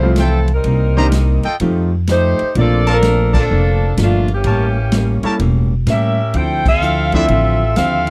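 Swinging at 126 BPM in 4/4 with a 66% eighth-note swing, this big band passage in F major rides on a drum kit with a punchy kick, medium-tuned snare, hi-hat, ride and crash, under a woody, up-front pizzicato upright bass. A smooth-topped saxophone section carries the melody with light vibrato, while a tight trumpet section adds stabs, a polished grand piano with short sustain and a clean, picked hollow-body electric guitar fill out the accompaniment, and band accents land at 3.3 and 6.6 seconds. The dry, close 1970s-style studio sound keeps the brassy, swinging mood direct as the harmony moves from Fmaj7 and Cm7 through Bbmaj7 and A7b9 to Dm9.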